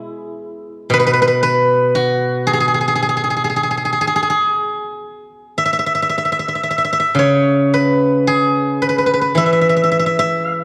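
Serene and flowing, this short passage of Chinese traditional music, cut from a longer piece, is performed by a solo steel-string zither. The tempo moves freely in rubato around 54-60 BPM in 4/4, and the music sits in an E gong mode, tuned to A4 = 444 Hz. Played with fingerpicks, the acoustic zither sounds bright and silvery, its ringing strings placed up front and spanning B2 to E5. A moderate concert hall reverb with a 1.8-second decay gives the notes space to bloom. The production itself leans dark, framing the instrument's sparkle across the full 10.6 seconds.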